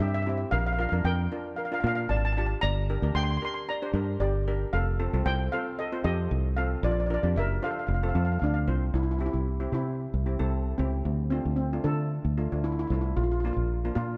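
Carefree and bouncy, this short calypso passage, cut from a longer piece, moves in a straight, easy four. A lead steel pan, struck with medium rubber sticks, carries the melody mid-forward and up front, its metallic shimmer ringing across the upper range. Beneath it, cello pans played with hard rubber sticks supply a bright accompaniment that sits a little lower in the mix. A fingered electric bass, foam-muted and punchy, anchors the groove with a direct, warm tone that stands up front alongside the lead. The first phrase runs through Bb, Gm and F7 before settling on F, and at 8.9 seconds a second section turns toward Dm7 and Bb. Light reverb and a dark, warm production give the trio a cozy, rounded glow.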